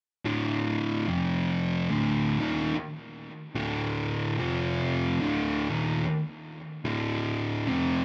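A thick, fuzz-drenched electric guitar enters at 0.3 s and carries this brooding metal excerpt entirely by itself until it stops at 8.0 s. Set at a slow 73 BPM in 4/4 with a lilting 60% swing on the eighth notes, the picked, double-tracked part sits up front and moves between D5 and F5 power chords in D phrygian, giving the passage a hypnotic, circling feel. Its dark, distorted tone stays low, spanning D2 to F3, and a tape echo trails behind the heavy fuzz. A moderate studio reverb of about 0.7 s lends some space, while the top end is rolled off above 10.5 kHz, keeping the sound murky and close. It plays as a fragment lifted from a longer piece, tuned slightly sharp to A4 = 441 Hz.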